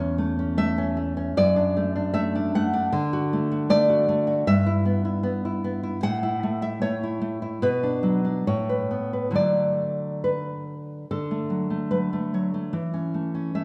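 Tender and sunny, this short romantic piece for solo classical guitar unfolds at an unhurried, freely breathing rubato pace in two. A single nylon-string guitar carries everything, its dark, fingerpicked tone sitting up front and spanning from deep bass notes to a singing upper register. The harmony moves gently through inverted chords, settling on a tonic by 9.3 seconds before a brief new passage arrives at 11.1 seconds. A generous church-like reverb surrounds the instrument, lending a recital-hall glow to each sustained note. Cut from a longer work, the clip closes at 13.6 seconds on an unresolved chord, as if mid-phrase.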